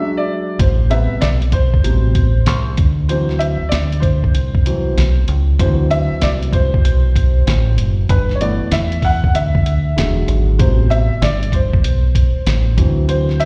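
A dark, mellow grand piano opens alone with a brief break over E9/F#, its boxy, worn tone carrying long sustain and a slapback echo. At 0.6 seconds the up-front, thumpy kick, fat snare and hi-hat of a muffled, pitched-down sampler-style kit arrive with a round, punchy fingered electric bass, and the piano takes a solo over Am7, D9, G69 and E7 in A dorian. This cool, nocturnal jazz-hop cut moves at 96 BPM with a swung 16th feel and sounds like a live gig heard through the venue's PA in a recital hall.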